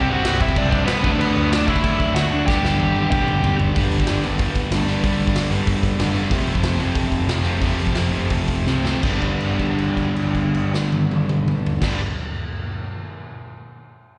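A biting, overdriven lead guitar sits up front with slapback echo and digital delay, carrying the melody in G major until it drops out at 3.6 seconds of this upbeat, energetic punk rock fragment. Beneath it, two distorted, picked electric guitars grind out riffs, one pushed into the background, while a growly, amped, overdriven bass punches along underneath. The raw garage drum kit is saturated and gritty, with a punchy kick, a medium-tuned snare, crashes, hi-hat and toms in a pumping stone room, and it rolls through fills as the sections change. The straight 4/4 drive, somewhere between 159 and 189 BPM, moves through C, D, G and F before slowing down from 6.3 seconds and landing on G for a held note from 9.0 seconds. The whole thing sounds like a live gig heard through the venue's PA, with small-room ambience, recital-hall reverb and a dull, capped top end.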